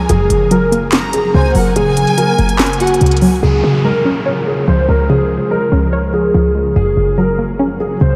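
Triumphant yet wistful, this short cut from a longer hip hop and trap piece moves with a half-time feel over chords of Gb, Db and back to Gb. A dark, intimate grand piano carries the melody up front, its action noise audible and its vintage tone colored by ensemble chorus and tape echo. A lush, bowed violin section with expressive vibrato adds a second line until 3.0 seconds. Beneath them, a lo-fi, warbling pluck built from detuned sawtooth and triangle waves shifts through filter sweeps, while a glassy FM pad holds ethereal sustained chords tinted by phaser and its own reverb. A punchy, tight 808-style bass anchors the low end, and an electronic trap kit with crisp hats, handclaps and a sharp snare drives the opening until 3.3 seconds, after which an electronic downlifter and riser enter and the mix floats in a huge, dreamy ambient reverb.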